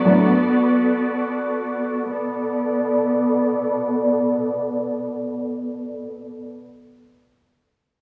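A dark symphonic string section holds lush, woody sustained chords with vibrato from 0.0 to 6.5 seconds, spanning B2 to D5 and softened by a low-pass filter. This brooding, menacing hip hop fragment in B minor moves in free time, resting on a Bm7 chord. The gritty hardware recording adds transformer saturation and a small room ambience, set against a moderate concert hall reverb with a 2.0-second decay.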